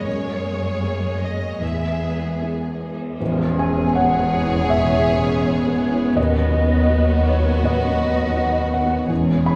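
Moving in a rubato 4/4 at roughly 74-83 BPM, this hopeful, uplifting fragment of cinematic film score sits in E lydian and opens at once with its upper strings and a felt-muted upright piano, the piano's thick-felt tone mellow and intimate, with audible action noise close at hand. Two violin sections carry the melody and a second line, one expressive with soft attack and lush vibrato, the other smooth and even. The first is set back in the mix beside a viola section that adds portamento to its accompaniment. Double basses and cellos, bowed and expressive, hold the low end from 0.1 s, while a dark cymbal swell and tam-tam murmur in the background until 6.1 s. At 3.2 s a band accent brings in a very quiet French horn section on sustained chords, and at 3.6 s a large, distant flute ensemble adds an airy second line with crisp attack. The harmony moves from F#add9 through E and E6 to B/D#, all bathed in the reverb of a recital hall.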